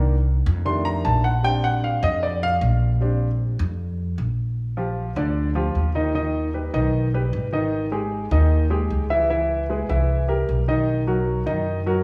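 Afro-Cuban jazz at 152 BPM in 4/4 with a straight, lively and danceable feel in Bb major, tuned slightly high to A4 = 441 Hz, this passage is cut from a longer piece. A warm, intimate concert grand piano with short sustain, deep lows and audible action noise takes a solo through the first 4.6 seconds, then carries on as accompaniment over chords such as Cm9, F13, Ebaug, Dbm7 and Bmaj7. A woody pizzicato upright bass on steel strings sits up front alongside it, both heard in a small room with moderate scoring-stage reverb.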